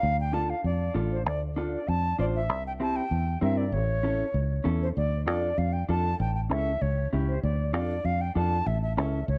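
Driving and danceable, this brief cumbia fragment moves at 194 BPM in a straight 4/4, centered on D minor and turning toward D harmonic minor at 5.0 s. An airy silver concert flute carries the melody up front, its tongued notes colored by vibrato and an unsteady quality, with a cassette-tape grain on its tone. Underneath, a fingered electric bass sits prominently in the mix, dark, round and foam-muted, with a direct, amped character. A mellow electric guitar enters at 0.3 s with clean, compressed, fingered accompaniment, also tinted by cassette tape and sitting lower in the balance. The harmony cycles through Dm, C and A, then Dm and A7, and the whole home recording carries light reverb and small-room ambience.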